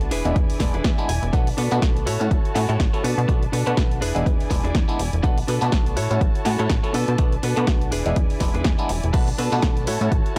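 A dry, gritty hardware sound with transformer saturation and a digital ambience frames this funky, groovy slice of filtered disco house, cut from a longer piece and riding a swung sixteenth-note feel in 4/4. Up front, an overdriven electronic kick drum arrives at 0.4 seconds, joined by a punchy analog drum machine whose snare, hi-hat and crash cymbal carry overdrive, with the hats and cymbals pumping against the kick. A plucky analog bass blends sawtooth, square, sine, ring-modulated and wave-folded tones into a funky, fast-attack line that decays. A bright, twangy clav plays stringy accompaniment through a phaser and a combo amp, while a muted studio violin section holds dark, veiled con sordino chords with vibrato and a lush, soft-attack ensemble sound. A clean, direct-recorded electric guitar, compressed and scooped with vintage 12-bit sampler grit, plays a picked riff and adds a fill between 0.4 and 1.3 seconds. 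The harmony circles through E7, Bm7 and A6, and every part except the kick and the snare pumps to the sidechain.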